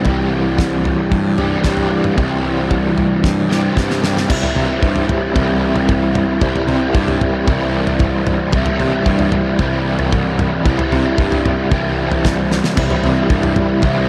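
A dreamy mix soaked in a huge ambient reverb with a long tail, its edges roughened by lossy compression artefacts, sets a kaleidoscopic, hypnotic mood for this short psychedelic rock excerpt in C major at 113 BPM in a straight 4/4. Up front, a bright, overdriven semi-hollow guitar plays a picked, double-tracked riff through a rotary speaker, its hollow-body tone colored by the speaker's swirl. Beneath it, a picked electric bass is thick with fuzz and overdrive, combining direct and amped sound in a warm low end. A damped 70s drum kit sounds dry and mid-forward, with a fat snare, a tight kick, toms and dark crash cymbals. A drum fill starting at 3.2 seconds leads into a new section at 4.3 seconds, and another fill arrives at 12.5 seconds before the piece is cut off.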